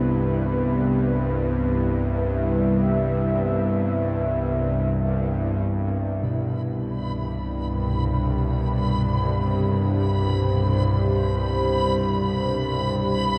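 A tense, string-like bowed drone sits up front in this ominous, cavernous ambient fragment in free time and C major, beneath a deep, moody pad of sustained chords with chorus, while a dark bronze singing bowl rings out slow-beating metallic arpeggios in the background through a diffuse delay, and from 7.0 s a bright, reversed swelling texture drifts in, all bathed in huge reverb and the warbling pitch drift of worn cassette tape.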